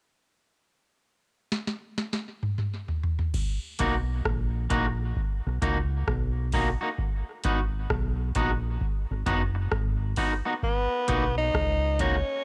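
A raspy, gritty tenor saxophone arrives at 10.6 seconds with scooped notes and light vibrato, closing this sunny, laid-back roots reggae excerpt at 66 BPM in B major with a swung sixteenth-note feel. Before it, a booming analog drum machine with a deep kick, tonal snare and metallic hats opens with a fill from 1.5 seconds. At 3.8 seconds a round, dark dub bass enters alongside a twangy, slightly broken-up electric guitar carrying tape echo, moving over Bmaj7 and G#m7, all with a dry, close, homemade cassette sound.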